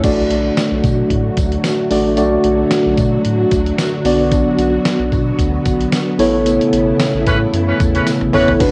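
This 1980s-style pop excerpt is moody and nostalgic, moving at 112 BPM in 4/4 with a light swing on the sixteenths, and passing from D to Bm to Aadd9. A mellow tine electric piano sits up front, heard as if through its built-in speakers and carrying the accompaniment. Beneath it, a string machine voicing cellos holds full, sawtooth-edged chords with a soft attack, a sub octave and an ensemble chorus. A round, deep analog bass with a hint of ring modulation anchors the low end, while a gritty, compressed sampler-style drum kit delivers a thumpy kick and fat snare, with a jingly tambourine tucked in the background. The band hits an accent from 6.5 seconds, a clear horn section adds tight stabs with light vibrato and tape echo at 7.3 seconds, and a drum fill arrives at 8.1 seconds, all wrapped in the character of a home cassette recording in a moderate studio room.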